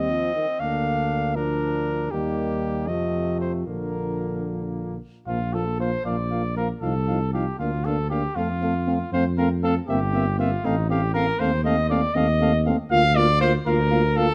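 This classical brass quintet passage, cut from a longer piece, sounds noble and triumphant, moving in a rubato 6/8 at about 79 BPM (counted in dotted quarters) in Bb major, tuned to A4 = 441 Hz. A warm, present cornet carries the melody, and an up-front trumpet with a mellow tone and light vibrato sings the second line, its sound distant and roomy. Beneath them, a French horn with vibrato and a soft-attacked euphonium with light vibrato fill in the accompaniment from the background. A dark tuba with a smooth top and light vibrato anchors the bass up front. The five instruments play together from start to finish, opening on a short phrase before a second section begins at 5.3 seconds, with harmonies that move through Bb, Eb and F7 and then lean toward F and C7 before returning to Bb/D at 12.9 seconds. Close, detailed microphones and light reverb give the sound a clear, intimate presence.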